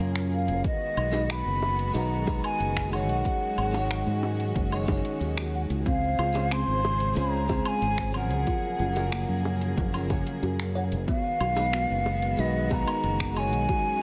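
A straight 4/4 groove at 92 BPM drives this relaxed, smooth sunset chillout excerpt: a deep, overdriven electronic kick and a produced deep house kit with metallic hi-hat, cabasa, finger snaps and woodblock in a small room, soft high-tuned bongos in the background, and a dark, round, punchy fingered bass up front beneath Gbmaj7, Cb6, Ab7sus4 and Dbmaj7 chords held by an intimate sul tasto chamber string section and filled out by a slightly broken-up, compressed picked electric guitar with tape echo, while an airy, hollow concert flute carries the mellow melody through tape echo from 0.3 s and a woody kalimba adds short thumb-plucked arpeggios from 5.9 s.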